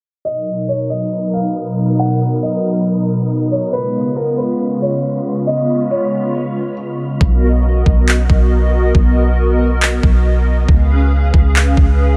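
A hollow, flute-like pad anchors this blissful, dreamy cloud-rap excerpt, holding airy, detuned chords up front that shimmer with ensemble chorus, tremolo and sidechain pumping as the harmony alternates between Bmaj7 and C#7. Above it, a felt-muted upright piano sings a soft, intimate melody through a delay, its vintage tone carrying audible action noise, while a breathy, wind-like tuned noise texture lingers in the background with built-in reverb. A filter sweep runs through the opening stretch, and a digital ambience, dulled by a low-pass filter, surrounds the music. At 7.2 seconds the half-time groove arrives: a deep, round 808-style bass with a fast attack and decaying tail sits up front beside a smooth R&B kit of knocking kick and handclaps, electronic and tape-warm.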